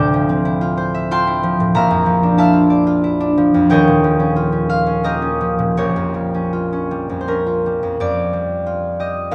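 In a rubato 3/4 that drifts between 78 and 96 BPM, a solo concert harp plays a peaceful, serene classical passage cut from a longer piece. Its bright, ringing, fingerpicked tone sits up front and spans Eb1 to D6, moving through Dm11, Bbmaj7#11, Eb9 and Bbm6 before settling onto Fsus2 as a new section opens at 8.0 seconds. A moderate recital-hall reverb surrounds the instrument, and the overall production is dark and warm.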